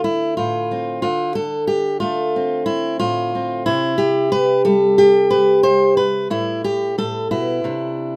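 A close, dark-toned fingerpicked steel-string acoustic guitar sits up front in a modest small-room ambience, playing solo folk in a straight 4/4 feel with a hopeful, nostalgic mood as it moves from Dm7 to C, then Emadd11/A and Cadd9 across this brief 8.2-second fragment of a longer piece.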